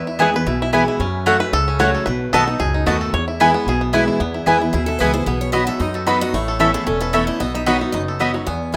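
Bluegrass at a driving, virtuosic 225 BPM in E major, swung on the eighths, this short cut opens with a twangy, fingerpicked banjo solo carrying the melody over a full-bodied dreadnought guitar accompaniment with audible finger squeak, and a thumpy pizzicato upright bass. A mellow, woody mandolin adds double-string stabs from 0.2 seconds and sits forward in the mix, while a second, bright jumbo guitar picks out a higher melody from 4.7 seconds as the chords move through E, F#m, B7 and later B and Aadd9. Light reverb gives the rough home-demo sound a little space.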